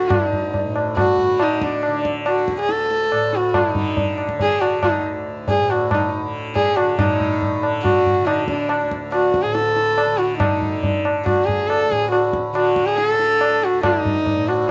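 Hindustani classical music in D major at 140 BPM, this meditative, radiant passage is cut from a longer piece, with a dark, intimate sarangi carrying the melody up front, its soft attack, airy bow, light vibrato and gliding portamento ringing against sympathetic strings. A softly plucked tanpura sustains a buzzing, shimmering drone beneath, while a low-tuned, saturated tabla rings out up front and compressed. A moderate echo-chamber reverb surrounds the trio, and the music moves into a new section at 7.0 seconds.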